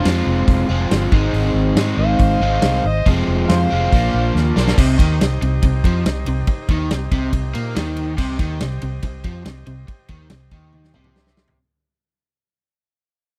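Blues rock power trio meets southern rock in this smoky, heavy cut from a longer piece, driving along at 141 BPM in 4/4 with a straight feel in C minor. A gritty, amplified harmonica carries the melody at the start, its jazz-style phrasing full of scooped notes, tongue slaps and light vibrato. Behind it a distorted lead guitar adds a faint second line in the background, and both fall away at 4.3 seconds as the drums play a fill. The double-tracked, compressed electric guitar riff sits up front with a round, foam-muted bass that is dark and punchy. A big acoustic kit with bright cymbals and a medium-tuned snare, plus a thick tonewheel organ holding sustained chords with key click and subtle chorus, fills out the sound. The dry, close 1970s-style studio sound has a small room reverb, and from 4.8 seconds the track fades out over the second section, closing with another drum fill.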